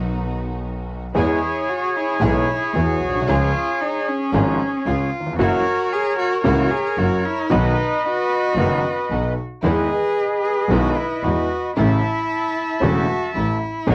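A rubato 4/4 pulse at 113 BPM gives this elegant, nostalgic tango in E major, cut from a longer piece, a loose, swaying gait, with tuning set slightly low at A4 = 436 Hz. A concert grand piano carries the accompaniment from the start, intimate and polished with deep bass, long sustain and audible action noise, while a bowed double bass sits further back with an earthy tone and light vibrato. At 1.2 s a reedy, vintage bandoneon enters up front with the melody, its band-limited sound recalling an old recording. Beneath it a solo cello plays a second line with vibrato, portamento and a nasal, boxy, expressive character, and a smooth, even symphonic string section adds bowed stabs in the background. The harmony opens on B and moves through E, C#, F#7 and B to Emaj7 and then A, and the cello, piano, strings and bandoneon carry a cassette tape colouring, all within a home cassette recording with light reverb.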